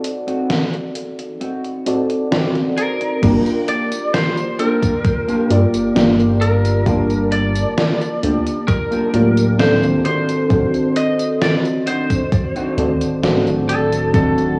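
Vaporwave in G minor at 66 BPM, woozy and hazy, where a round, chorused FM electric piano, a dark clean guitar riff and gated, overdriven drum-machine crash, hi-hat, snare and tambourine open a break over D7b9; a twangy, slightly broken-up lead guitar melody with tape echo enters at 2.8 s, just before a glossy synth bass and thumpy overdriven kick arrive at 3.2 s on Gm7, all steeped in a lush hall reverb and the warbling pitch drift of worn cassette tape in this cut from a longer piece.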